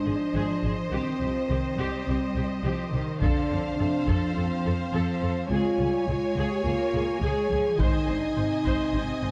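This cinematic, epic orchestral film score passage, cut from a longer piece, carries an adventurous, majestic mood in a steady, straight 4/4. A mellow French horn section holds sustained chords at the front of the mix, while the violins carry the melody in a focused, distant voice with vibrato, and a second violin section adds a lush, smooth-topped line beneath it. Clear violas fill in the accompaniment, and the cellos and double basses ground the bass with an even, bowed weight. A close, dry taiko ensemble struck with heavy sticks punctuates the music twice, at 3.2 seconds and again at 7.8 seconds. The harmony moves from Ab through Cm, F and Db before returning to Ab, all set in a dark production with a moderate scoring-stage reverb.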